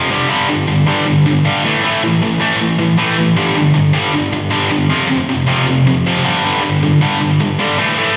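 Menacing and heavy, this 8.2-second fragment of straight-feel rock at 156 BPM in 4/4 features a lone high-gain electric guitar, bright, distorted, picked and double-tracked, sitting up front as it grinds through G5, A5, G5, F5 and back to G5 in the low register. It sounds like a live gig heard through the venue's PA, with recital hall reverb and a top end that stops at 10.5 kHz, giving the bright guitar a slightly muffled, roomy edge.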